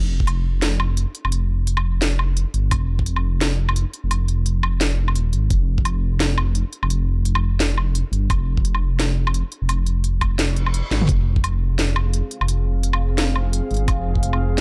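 Dark, digital sound frames this tense half-time drum and bass excerpt, where a rumbling, detuned saw bass with tube saturation sits up front under a layered electronic kit of cracking snare, crisp hats, toms and woodblock plus a knocking kick; a reverse cymbal leads into a drum fill at 10.9 s, and a moody pad with chorus, reverb, 12-bit sampler grit and sidechain pumping enters at 11.8 s.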